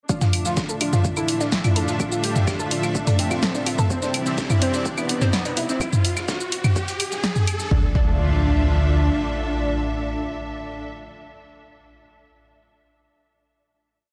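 An overdriven deep house drum kit sits up front with a punchy snare, claves, shaker, toms and hi-hat, stacked over a deep, overdriven electronic kick and a very quiet, gritty sampler-style breakbeat kit, all three re-recorded in a small room, driving this hypnotic, dramatic melodic techno build. A fat, warbling analog lead carries a repeating riff over a lush unison pad, a rumbling detuned saw bass and a rich, smooth string section, all four pumping with the sidechain, while a round analog pluck, also pumping, arpeggiates in the background under a filter sweep until 5.8 seconds, with dub echo on lead and pluck. A riser and impact enter at 2.7 seconds, and the two kits stop at 7.7 seconds, with the kick following at 8.1 seconds, leaving a final held chord in light digital ambience inside a dense, heavily limited master.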